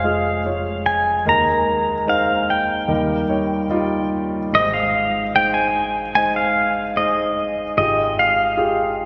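A pedal steel guitar and a dark concert grand piano begin together, opening this brief, nostalgic and tender acoustic folk-pop ballad at a slow 74 BPM in Ab major. The electric pedal steel carries the melody between Eb5 and Bb5, its bright, twangy tone shaped by fingerpicks, slide and volume swells, with a clean, compressed sound placed up front. Beneath it, the mellow piano supplies the accompaniment with deep bass and audible action noise that gives it an intimate, vintage character. The harmony moves from Db/F through Ebsus4 and Eb before settling on Ab as the second section arrives at 4.5 seconds, later shifting to Fmadd9/Ab. A wet church reverb with a long decay surrounds both instruments, lending the recording the spacious air of a church or concert hall, and the passage ends at 9.1 seconds as though cut from a longer piece.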